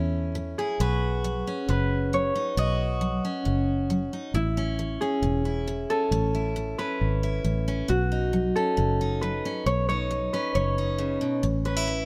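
Heartfelt and nostalgic, this honky-tonk and classic country excerpt moves at 135 BPM in A lydian, with a ringing, fingerpicked Celtic harp carrying the melody over a bright, full-bodied picked steel-string acoustic guitar on fresh strings and a round, dark, foam-muted fingered electric bass, all three up front in light reverb as the harmony shifts between A, Badd9 and Aadd9.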